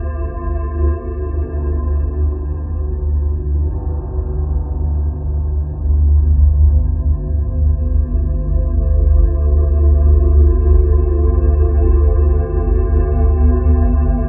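A swarming, detuned drone sits up front from the start, a tense, granular mass moving between G1 and D2 over a G5 chord, with a filter sweep shaping it from 1.2 seconds onward. This dark ambient fragment, cut from a longer piece, unfolds in free time and is tuned to A4 = 441 Hz, giving it an ominous, cavernous mood. A deep, moody pad with sub octave and chorus surfaces only faintly in the opening moments before dropping out at 1.2 seconds. A very quiet bronze singing bowl rings throughout with slow beating, its metallic, meditative tone struck with a suede striker. From 1.2 to 3.8 seconds, a tam-tam fades in from the background, its bright cymbals softened by a low-pass filter. A moderate cathedral reverb lends the dark production a lingering, hollow space.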